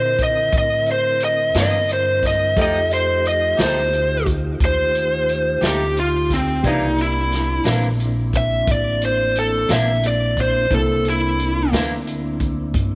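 A small room with light reverb frames this gritty, laid-back slow blues excerpt in 12/8 at 59 BPM, moving from C9 to F9 and back, with a dark, overdriven lead guitar up front soloing from C4 to E5 until 11.7 seconds. Beneath it, a woody pizzicato upright bass and a warm vintage drum kit with a punchy kick, medium-tuned snare and rolled-off top anchor the groove. A flute-like tonewheel organ sustains chords through a slow rotary speaker, while an intimate grand piano with audible action noise and a clean electric guitar with harmonic tremolo, entering at 1.5 seconds, sit in the background.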